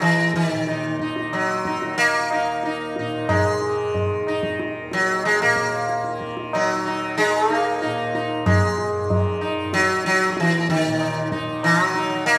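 Longing and meditative, this brief Hindustani classical excerpt gradually speeds up as an up-front, bright, plectrum-plucked sitar with buzzing tone and shimmering sympathetic strings carries the melody over a softly plucked, warm tanpura drone and a high-tuned, ringing tabla with a vintage, band-limited character, all set in the moderate reverb of a concert hall, with a new section arriving at 8.5 seconds.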